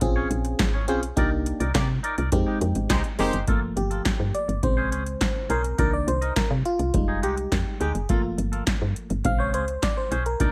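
Slick and funky, this early-eighties boogie funk excerpt moves at 104 BPM in a straight 4/4 over minor ninth chords, with a dry electro analog drum machine up front (deep kick, punchy snare, metallic hi-hat and handclaps, all touched by gated reverb) and a round, woody FM bass. A glassy, bell-like FM electric piano with chorus and a clean, scooped, twangy electric guitar riff run throughout, while a distant, roomy horn section with light vibrato adds a second line from 1.7 to 3.4 s during a band accent. From 3.5 s the electric piano takes a solo over the groove, all set in a digital ambience.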